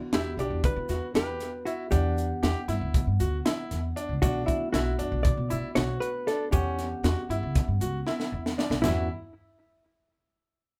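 Driving and intricate, this progressive instrumental band piece moves in 9/8 at 234 BPM counted in eighths, with a straight feel in E dorian, and is cut from a longer piece. A dark, compressed hollow-body jazz guitar carries the melody with tape echo, while a barky tine electric piano, clean through a combo amp, supplies accompaniment and a bright grand piano with short sustain plays arpeggios. Underneath, a woody pizzicato upright bass on steel strings sits up front alongside a crisp fusion drum kit with a high-tuned snare, tight kick, crash, hi-hat and toms, its small room pumping audibly. A grainy egg shaker enters at 0.9 seconds, very quiet in the mix. The harmony moves from Emadd9 to Bm7 and then Em69, and a drum fill at 8.1 seconds leads into a new section at 8.8 seconds. The whole band plays live in one room with moderate studio ambience.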